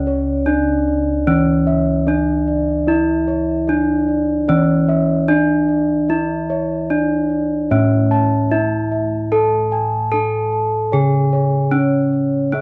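This dry, close recording has the intimate, small-room feel of a 1970s studio. It is a hypnotic, shimmering piece of Javanese gamelan in a steady, straight 4/4, cut from a longer work. At the front, a bronze metallophone struck with a horn mallet carries the melody in a dark, smooth, ringing tone, with a short slapback echo trailing each note. Set back a little, a second metallophone plays arpeggios with padded disc mallets, its mellow, soft sound taking on a boxy colour. Bossed gongs fill out the texture in two roles: one set plays round, beating arpeggios up front, while a lower set supplies the bass with the same pulsing metallic resonance. All four parts play together for the full 12.6 seconds, forming a single shimmer of bronze.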